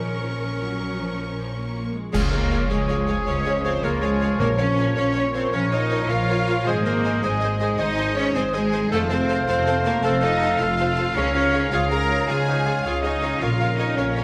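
Determined and swashbuckling, this heroic adventure film cue in 12/8 opens with lush, vibrato-rich violins carrying the melody over a second violin line, a very quiet bright viola accompaniment, ringing fingerpicked harp arpeggios, clear trumpet stabs and a focused bowed foundation of cellos and double basses. At 2.1 seconds a dark crash of clash cymbals and bass drum accents the full band as the oboe and a very quiet clarinet add second lines, distant dark horns and tight vintage-toned trombones hold sustained chords in the background, and a round soft-mallet timpani stroke lands at 4.4 seconds. A wet scoring-stage reverb surrounds the orchestra in this fragment cut from a longer piece.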